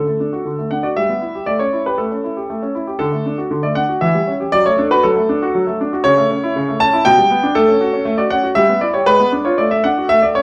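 A straight, even pulse in three-four time carries this short cut from a longer classical-period piano sonatina, dramatic yet elegant in mood. A grand piano plays solo for the full 10.4 seconds, its tone clear and present with long sustain, set up front and spanning from B2 to A5. The harmony moves through graceful changes, passing through a diminished chord at 4.0 seconds and leaning on a G#dim7 near 9.1 seconds before settling onto D/A at 9.6 seconds. A moderate recital hall reverb gives the instrument an airy sense of space. Over it all sits the character of worn, old cassette tape, whose warbly pitch drift lends the performance a faded, wavering quality.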